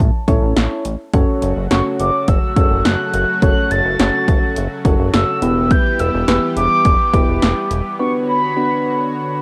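Driving and cool, this brief synth-pop excerpt at 105 BPM sets a mellow, horn-like synth lead with vibrato over a glossy, nasal chorused bass, a punchy, overdriven analog drum machine up front, soft electric-piano-like keys and a lush, warbling detuned pad, moving through A, F#m, Em and Bmadd9 with a cassette-tinged home-recorded sound, before the drums and bass stop at 7.8 seconds for a short break capped by a keys fill at 9.1 seconds.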